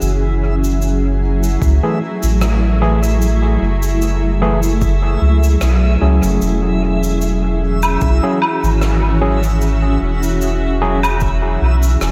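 A round, up-front dub sub bass anchors this deep, meditative ambient dub excerpt, where a blurred granular cloud pad holds F#m9 and E69 chords, a reversed, dreamy texture swells overhead, cabasa, rim click and woodblock trail dub echo, a tape-warm electronic kick sits in the background from 1.6 seconds, and a barky, gritty overdriven tine electric piano drops echoing stabs with vintage sampler grit inside a small, lightly reverberant room.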